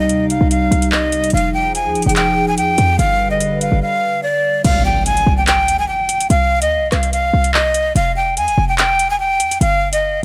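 A breathy, bright flute with vibrato and digital delay carries an ominous melody over a hollow, chorused pad and a punchy, tight 808-style bass, joined by a drill kit of metallic hats, handclaps, rim clicks and crash in a menacing half-time hip hop groove under vinyl crackle and light reverb, until the pad drops out at 4.6 seconds as an electronic impact hits and the flute, bass and drums press on to the end of this excerpt.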